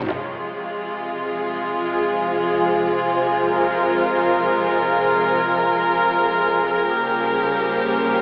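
Menacing and chaotic, this free-time dubstep fragment in F minor, tuned to A4 = 439 Hz, opens with a dark, close studio string section bowing sul tasto sustained chords with light vibrato, joined at 1.3 s by a cloudy, blurred granular pad with its own built-in reverb, all drifting from Fm to Gdim at 6.9 s through a lush hall reverb, the sound of a big system in a bare room, and an AM-radio colour.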